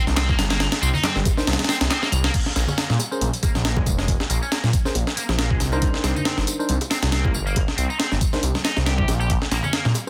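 A swung breakbeat groove in 4/4 drives this swaggering, funky fragment. A compressed, pitched-up, gritty sampler-style drum kit sits up front with a thumpy kick and high-tuned snare, while overdriven electronic tambourine and handclaps and ringing acoustic congas and bongos sit in the background. A thick, swirling detuned saw bass with phaser anchors the low end beneath a bright, scooped, double-tracked high-gain guitar riff with delay, whose filter sweep begins at 2.3 s, and clean tine electric piano stabs with delay arrive at 1.4 s. The chords move from C7 (third omitted) through Bbm7 to Cm9 in a dense, heavily limited mix, with an opening drop and a band accent at 1.9 s.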